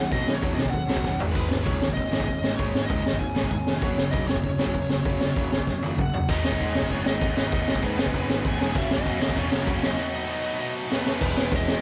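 Opening at once on a smooth, overdriven lead guitar melody over a cranked-stack guitar riff, a quieter distorted guitar, and a growly fuzz bass, this rowdy, energetic punk rock cut at 194 BPM is driven by an up-front, boomy, gritty garage drum kit with a high-tuned snare in a small room, with fills at 1.0 and 5.7 seconds, a sludgy double-tracked guitar slipping in at 8.7 seconds, and a break from 10.0 seconds as the chords move from G#m through F# and B7 to E, all over a faint mains hum.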